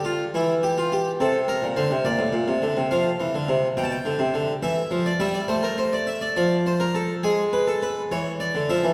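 A wet concert-hall reverb surrounds this short excerpt, heard from further back in the room, though the solo harpsichord still sits up front with an airy, plucked, full French-style tone from its two sets of strings. This is a solemn, serious baroque-style two-part invention in a straight 6/8, its harmony wandering through chords such as Em, Bbmaj9 and G/B before shifting at 6.4 seconds into a second section that touches on Dm/F, G#m and Dmadd9. The lone instrument ranges from A2 to A5 across its brief 8.9 seconds, lifted from a longer piece.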